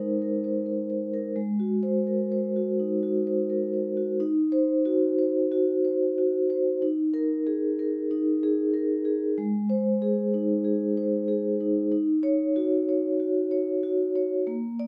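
A solo vibraphone played with soft mallets carries this contemporary classical piece, its metallic, ringing tone softened to a mellow glow and colored by a fast motor vibrato. The mood is flowing and hypnotic, moving in 4/4 at a loose 83-96 BPM with a rubato feel, and the harmony sits in Eb dorian. The vibraphone stays close and up front, sounding in a boxy small room with a moderate ambience. An opening passage lingers on Abadd9 and Ab9 chords before a new section begins at 4.2 seconds, drifting through Ebm6, Bb7sus4/Eb and Ab. The line ranges from Ab3 to D5, and this short cut from a longer piece settles on Ebm7 near its close at 14.9 seconds.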